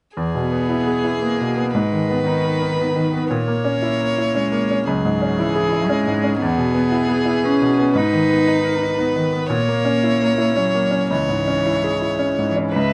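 In a flexible, rubato triple metre, this fragile, melancholic neoclassical passage for piano and strings is cut from a longer piece. A bright grand piano sits up front as accompaniment from 0.2 s, its natural tone and short sustain carrying a repeating cycle of E, G#madd9, A#dim and C#m that comes around twice. A single violin plays the melody up close, its bowed line clear, smooth and even with vibrato. One cellist enters at 0.4 s with a rich, expressive second line shaped by vibrato and portamento. A lone viola adds a warm, bowed note with vibrato only at 12.7 s, just before the passage breaks off, while light reverb surrounds the ensemble and the highest frequencies are trimmed.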